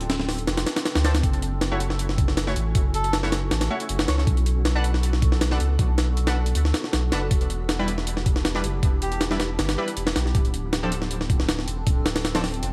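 A dark, nostalgic drum and bass cut at 158 BPM opens with gritty, pitched-up jungle sampler drums, thumpy kick and a thick saturated sub bass up front over a blurred granular pad and vinyl crackle, as bold ring-modulated orchestra-hit stabs with dub echo arrive at 1.0 s and a breathy, reedy melodica drifts in the background from 2.9 s across Dm7, F#m7, Bm7 and Em7.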